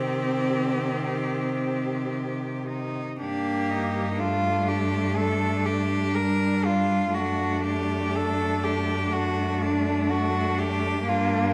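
Yearning and solemn, this lyrical classical passage for cello ensemble unfolds with a rubato feel in four, as a clear, focused cello sings the melody up front over a smooth, even second cello line, a rich inner accompaniment and an expressive bass cello with soft attacks and portamento, each a single bowed player with vibrato, all set in a wet recital hall as the harmony shifts at 3.2 s and again at 7.1 s.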